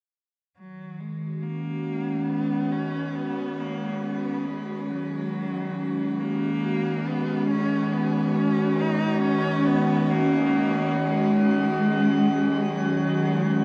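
Bathed in a wet shimmer reverb with a long tail, this melancholic, spacious ambient fragment, cut from a longer piece, sets a single warm bowed cello, full of vibrato and portamento and carried on tape echo, fading in from 0.5 seconds as its expressive melody sits up front over a warbling, detuned, lo-fi pad of sustained chords that enters at 0.9 seconds, its mellow, nostalgic glow shaped by chorus and a filter sweep.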